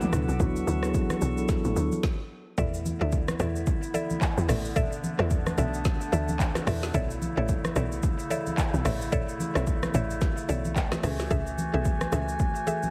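A hypnotic, deep amapiano excerpt at 110 BPM in 4/4, swung on the sixteenths and cut from a longer piece, opens with a mellow tine electric piano up front, sounding as if through built-in speakers, over chords moving from D69. A distant, roomy woodwind section holds sustained chords in a classical style throughout, pumping under sidechain, while a tight, percussive log drum bass with a fast attack and decaying tail anchors the low end until 12.4 s. A layered deep house drum kit sits up front, with a punchy kick, woody snare, dark hats, handclaps, rim clicks, shaker and toms, and thick-skinned, medium-tuned congas stay in the background. After the electric piano stops at 2.1 s and a brief stop, the drop arrives at 2.6 s, where a round, mallet-like synth pluck with chorus and delay adds short stabs as the harmony moves through E7sus4, Bm11 and F#m9. The whole mix carries light reverb and a heavily compressed, radio-like sound.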